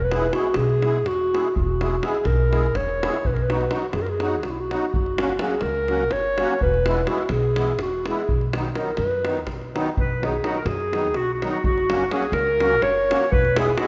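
Balkan folk in a wedding-band vein, wild and festive at 250 BPM in 7/8 and B major, this piece opens with a dark, smooth-topped clarinet up front in classical style over thumpy, woody pizzicato upright bass, deep davul and a reedy, shimmering musette accordion, all in a moderate concert hall reverb, until a clear, distant second clarinet joins at 10.0 seconds as the section repeats, moving through E, B and F# chords.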